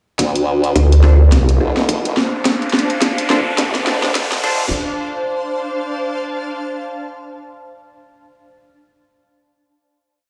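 A nasal, saturated vowel-sweep wobble bass leads this short, playful glitch hop piece in D minor at 106 BPM, its modulated phrases with changing wobble speed answering a second, formant-sweep wobble bass built from pulse and sine tones, both sitting up front with chorus over a swung beat of cracking snare, rim, closed hat, crash and a tight, broken electronic kick. From 1.0 s an overdriven, stringy clav adds sparse echoing chord stabs in close voicing, a cloudy, detuned granular pad with phaser and sidechain pumping enters at 1.2 s, a riser follows at 1.4 s, and filter sweeps and a drum fill carry the build over a Dm7 chord until 4.7 s. The pad then holds the final chord alone until 6.9 s, all set in a bare room with large studio reverb.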